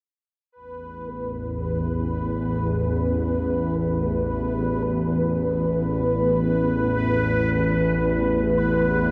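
This short excerpt of dark ambient drone opens at 0.5 seconds with a bubbling stepped-filter texture, a detuned sawtooth sound whose resonant filter jumps in random steps around B4, treated with chorus and its own reverb. At 1.0 seconds a bowed-like drone joins far below, spanning A1 to E2, its tense, string-like sawtooth layers detuned in unison with a breath of noise, a slow attack, vibrato and a long release. Both parts sit up front and carry a bright edge, yet the overall production stays dark and warm. The mood is dark and ominous, floating in free time over a single Asus2 harmony. A huge, wet ambient reverb with a 7.9 second tail surrounds the whole piece, which runs until 9.1 seconds and is cut from something longer.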